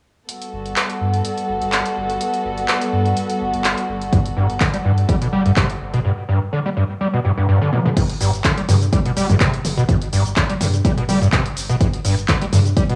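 Recorded at home on cassette with a light touch of studio reverb, this raw, playful acid house fragment opens on a close, intimate chamber string section holding a soft-edged, bowed Gmaj9 chord with light vibrato, pumping against the sidechain over a deep, round sine sub bass and a punchy analog drum machine of hi-hat, handclaps, cabasa, toms and crash. At 4.1 seconds an up-front electronic kick and a squelchy, gritty, overdriven square-wave acid riff arrive, the riff's resonant filter sweep thickened by distortion, ensemble chorus and tape echo. The strings fall away at 6.0 seconds, and after a drum fill the second section leaves the chord behind for a bare, swung groove of drums, sub and acid bass.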